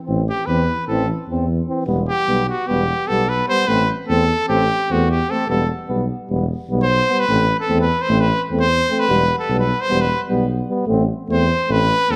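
Set in a 9/8 metre with a straight feel at 300 beats per minute counted in eighths, this Balkan brass band passage in A minor moves with brisk, virtuosic energy and a bittersweet edge. A bright trumpet carries the melody as a solo from 0.3 seconds, sitting up front with light vibrato and a classical poise. Beneath it, a clear, present trombone and a dark euphonium set further back supply the accompaniment, while a mellow tuba, close-miked and up front with its own light vibrato, anchors the low end. The harmony alternates steadily between A minor and E minor throughout. A moderate recital hall reverb lends the ensemble a natural sense of space in this portion cut from a longer piece.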